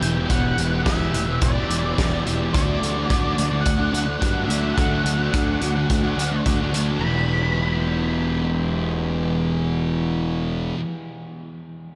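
Shoegaze-leaning dream pop rock at 107 BPM in E minor, brooding and melancholic, cut from a longer piece, with the harmony moving from Em7 to D before settling on Em at 7.0 seconds. An octave-fuzz lead guitar carries a dark, distorted melody over an overdriven guitar riff bathed in reverse reverb, a thick fuzz guitar with chorus sitting up front, and a round, fuzzed-out picked bass. A loose indie drum kit with a fat snare and punchy, saturated kick drives the groove until 6.9 seconds, all set inside a cavernous cathedral reverb that leaves the mix soaked and dreamy.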